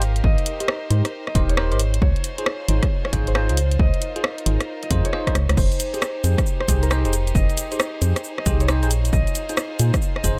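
An up-front, organ-like FM bass carries this soulful, moody snippet of two-step UK garage, its hollow, dark tone striking with a fast attack and then decaying, moving between Eb1 and Bb2. The track sits at 135 BPM in F minor with a swung sixteenth-note feel. The overdriven, layered garage kit of cabasa, crash, hi-hat and rim click runs from the start, joined at 0.2 seconds by a punchy analog electronic kick, and a drum fill lands at 5.1 seconds. A bright, thumb-plucked concert harp with delay carries the melody, while a chamber violin section plays soft, sul tasto sustained chords with light vibrato, pumping under sidechain compression. From 0.6 seconds a bell-like, clean tine electric piano adds stabs through phaser and delay, over a progression moving from Abmaj7 to Dbmaj9, Fm7 and Bb7sus4, all in a light reverb.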